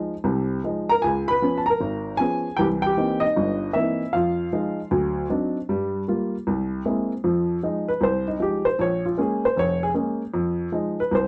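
A swung eighth-note feel in four drives this moody solo jazz fragment, played by a single baby grand piano that ranges from deep bass to high treble over shifting minor seventh and altered dominant chords. The piano sits up front with an intimate, natural tone, short sustain and audible action noise, framed by light reverb in a dry, close 1970s-style studio sound. From 7.2 seconds a new passage opens with the piano taking a solo, before the clip cuts off at 11.3 seconds.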